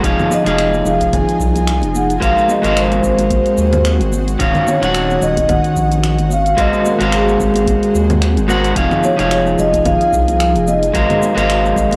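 Wistful and relaxed, this 12-second sunset chillout excerpt moves at 110 BPM in 4/4 with a gentle swing on the 16ths, its tuning set slightly low at A4 = 436 Hz. An up-front electric guitar at the edge of break-up, picked and scooped, carries the accompaniment through a cycle of Fm7, Ab13 and Ebm9, while an ethereal, airy pad of detuned sawtooth and triangle tones sits in the background with a slow attack, ensemble chorus and its own reverb. A round analog bass, deep and evolving with a fast attack, anchors the low end beneath a layered deep house kit of dark hats, finger snaps, shaker and congas, plus a deep electronic kick tucked behind. Very quiet, high-tuned congas played with soft hands enter at 0.2 seconds, close and dry. From 0.3 seconds a vibraphone with soft mallets takes the melody, metallic and ringing with slow motor vibrato, a boxy small-room character and tape echo. Cassette tape colours the guitar, pad and drums, and the whole home recording sits in a moderate studio reverb.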